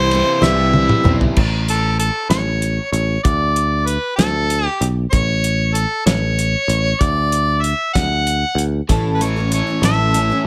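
Nostalgic and hopeful, this folk rock and heartland rock passage moves at a slow 64 BPM in a straight 6/8 lilt, cut from a longer piece. A mellow, vintage-toned harmonica carries the melody up front throughout, its vibrato and scooped notes giving the line a punchy, singing quality. A growly picked electric bass holds the low end directly beneath it, while a cloth-damped, thuddy drum kit with dark cymbals, a fat snare and a tight kick plays a fill between 0.4 and 1.4 seconds. A shimmering, octave-doubled twelve-string acoustic guitar and a bright, double-tracked overdriven guitar with harmonic tremolo sit in the background, sounding only at the opening and again from 8.9 seconds. A very quiet concert grand piano adds a brief touch of deep-bassed polish in the first 1.2 seconds, and the chords move from C to A, D5, A, D and back to A under light studio reverb.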